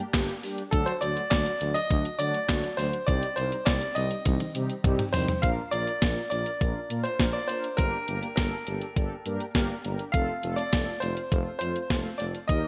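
A driving, straight 4/4 pulse at 102 BPM comes from a clean, thumpy 12-bit drum machine of kick, medium-tuned snare, handclaps, hi-hat and toms, overdriven and treated with gated reverb, which sits up front and breaks into a fill from 4.3 to 5.4 seconds. In this melancholic synth-pop fragment, a smooth-topped tuba holds the bass, while a dark, detuned synth brass pad with chorus and a filter sweep sustains the harmony through Gm, D, Cm, Bb and F. A clear, vintage-toned concert grand piano carries the melody from 0.7 seconds through a digital delay, all within a bright 1980s-style digital production with moderate plate reverb.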